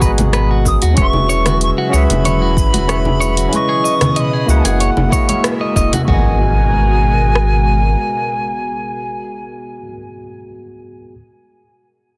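A round, sine-like sub bass sits up front in this smooth sunset chillout excerpt in G# minor at 94 BPM, its tube-saturated tone carrying the low end until 8.0 seconds. Two layers of an overdriven deep house drum kit, re-recorded in a small room, supply a deep kick, rim clicks, cabasa, congas and hi-hat, while acoustic bongos and congas murmur in the background. A worn, slightly out-of-tune tine electric piano with light overdrive and tape echo plays the accompaniment, joined by picked, compressed clean electric guitar arpeggios and a breathy, detuned pad whose slow-attack chords shimmer with chorus and phaser. From 0.7 seconds a distant wooden flute with vibrato and 12-bit sampler grit carries the melody over chords moving from G#m9 through E69, C#m9 and F#13. The band hits an accent just before 6.1 seconds, when the harmony returns to G#m9 and a very quiet electronic impact appears. The master is dense and heavily limited, with a light reverb.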